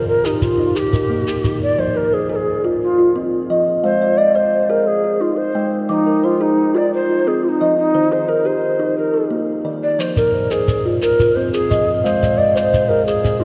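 A low wooden flute carries the melody up front, its airy, warm tone marked by vibrato, tongued chiff and expressive phrasing. Alongside it, a soft, woody kalimba rings out fingertip-plucked arpeggios over an Eb, F minor and A-flat cycle in F dorian, while a grainy shekere adds close, mellow percussion briefly at the start and again from 10.0 seconds. This trance-like southern African traditional piece is cut from a longer work and moves in a hypnotic, mbira-style 12/8 at 117 BPM, bathed in a cathedral reverb that lets each note hang in the church-like space.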